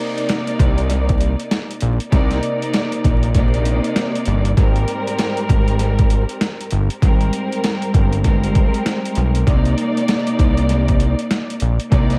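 An echo-heavy digital ambience with vinyl crackle wraps this short cut from a longer moody, tough boom-bap hip-hop track in C minor, moving at 98 BPM in 4/4 with a 61% swing on the 16ths. A lush, bowed studio string section opens at 0.0 s, its smooth, even ensemble tone carrying vibrato and a smooth top end, colored by cassette tape character, high-pass and low-pass filtering and analog delay. The sampler-style drum kit arrives at 0.2 s, gritty and compressed with a thumpy kick, a medium-tuned snare and hi-hat, overdriven, re-recorded in a small room and touched with analog delay. A fat, detuned sawtooth bass joins at 0.6 s with a fast attack, sustained notes and a filter sweep, sounding thick and warm. The drums, bass and strings all sit up front over a harmony that moves from Cm9 to Abmaj9 and back to Cm9.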